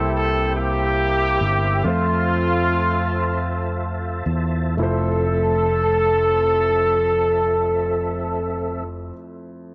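Uplifting and jubilant, this slow gospel passage in 6/8 eases into a slowdown over its first 4.8 seconds as the harmony moves from C7 to Fmaj7. A roomy, distant-sounding horn section with light vibrato carries the melody up front, while a punchy, direct fingered electric bass anchors the low end. Behind them, a natural grand piano accompanies and a clear tonewheel organ holds sustained chords with key click, light overdrive, chorus vibrato and a slow rotary speaker, all set in light reverb, with the piano the last part sounding, until 9.7 seconds.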